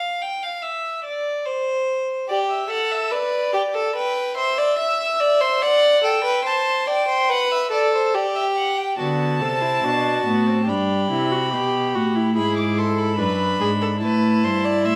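A single bowed violin opens this stately, elegant baroque-style fugue for string quartet, its rich gut-string tone singing high and slightly distant at a measured 72 BPM in 4/4, tuned to A4 = 441 Hz. At 2.3 s a second violin enters beneath it with a reedy, warm period-style voice, and the harmony settles on G before moving through G/B and D7. At 9.0 s the viola and cello arrive together: the viola adds a smooth-topped inner accompaniment, while the cello anchors the bass with a rich, gently vibrato-touched sound. The chords pass from D7 back to G, then lean through E7/G# toward A minor as this passage, cut from a longer piece, breaks off. A wet stone-room reverb surrounds the quartet, lending the gut-string playing an echoing, chamber-like grandeur.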